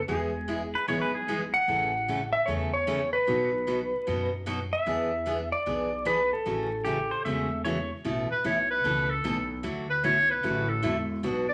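A bright, forceful clarinet takes a jazz-style solo with vibrato from 8.3 seconds, closing this cheerful, down-home western swing excerpt cut from a longer piece. Before it, a dark, compressed lap steel carries the melody with slide and volume swells, while a twangy pedal steel played with fingerpicks adds short second lines, all over a full-bodied jumbo acoustic guitar picking the chords and a woody, thumpy pizzicato upright bass on gut strings. The swung groove sits in a moderate large-studio reverb with a layer of vinyl crackle.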